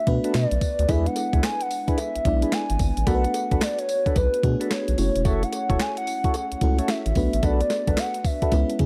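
A mix with little reverb opens this short cut from a longer R&B piece in a new jack swing style, slick and confident at 110 BPM in 4/4 with a swung sixteenth-note feel. A crisp 8-bit digital drum machine sits up front with a thumpy kick, medium-tuned snare, handclaps, hi-hat and tambourine, carrying a tape-warm, sampler-style edge, while a round analog bass, deep and dark with a fast attack, anchors the low end from E1 to C#3. An FM electric piano layered with a soft pad supplies lush, dreamy accompaniment with chorus and tremolo, and a mellow tonewheel organ adds stabs with audible key click through a slow rotary speaker. Over this, a hollow, woody clarinet-like synth lead carries the melody between B4 and G#5 with a soft attack, vibrato, chorus and delay. A metallic cowbell, close and dry in the background, enters at 0.9 seconds as the chords move from Bm7 to E7, back to Bm7, then to F#m7 before returning to Bm7.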